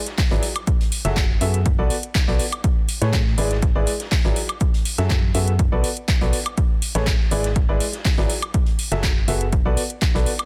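Piano house with an uplifting, feel-good mood, this short excerpt from a longer piece rides a punchy, up-front analog kick while a layered house kit adds handclaps, metallic hi-hats and woodblock, and a very quiet, gritty garage kit tucks hi-hat, shaker and snare far beneath. A clear, woody, slightly detuned upright piano plays the riff through sidechain pumping and delay, cycling F#m9, Bm7, Amaj9 and E7/G#, over a hollow, dark FM bass with an organ-like, fast-attack, decaying tone that pumps along with it. The small room ambience and dense, heavily limited modern master keep the sound tight and full.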